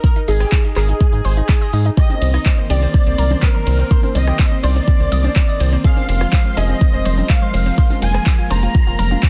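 This emotional, expansive progressive house excerpt in C minor at 124 BPM opens on a deep, up-front electronic kick and a deep house kit of handclaps, smooth hi-hats, ride and rim clicks, with a grainy egg shaker, while a smooth, mellow portamento lead with vibrato, ensemble chorus and dub echo carries the melody over a pure, very quiet FM bell line and bright, detuned analog pluck arpeggios that pump with sidechain through chorus and digital delay. A round, dark analog bass with tube saturation arrives at 0.3 seconds, and from 2.1 seconds an airy, breathy pad holds slow-blooming chords alongside overdriven congas, joined at 2.6 seconds by a twinkling granular shimmer. The chords move from Absus2 to Cm7 and then Fm in a dry, dense, heavily limited modern mix.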